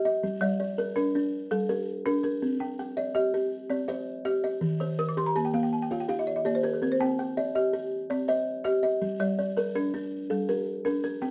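Set in 12/8 at 109 beats per minute to the dotted quarter, with a straight feel, this southern African traditional piece is cut from a longer work and runs about 11.3 seconds in a hypnotic, rippling mood. It is tuned to an equiheptatonic scale on C, and the harmony moves through Gm, Cm, Eb, Cm and back to Gm. A buzzing kalimba with a solid board plays arpeggios throughout, its thumbnail-plucked notes short, dark and smooth. A folk marimba with medium mallets on hardwood bars also plays arpeggios throughout, with a dry, rustic, mid-forward tone that reaches higher than the kalimba. Between 4.8 and 6.8 seconds the marimba breaks into a fill. Both warm, woody instruments sit up front in a small room with moderate reverb.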